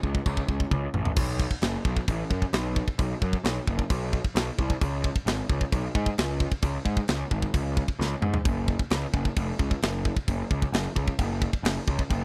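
This heavy, epic metal fragment opens with a fuzz-drenched picked electric bass and a tight metal drum kit together at a straight 132 BPM in 4/4. The bass is growly and overdriven, sitting up front in its low register between E#1 and G#2, with a bright, direct amped edge. The drums are acoustic, airy and polished, with a tight kick, a medium-tuned snare, toms, and bright crash and china cymbals ringing over the top. A quick drum fill at 0.7 seconds leads out of the brief opening into the main body at 1.2 seconds, and another fill arrives at 8.0 seconds. The sound is close and dry, with a 1970s studio character and little reverb.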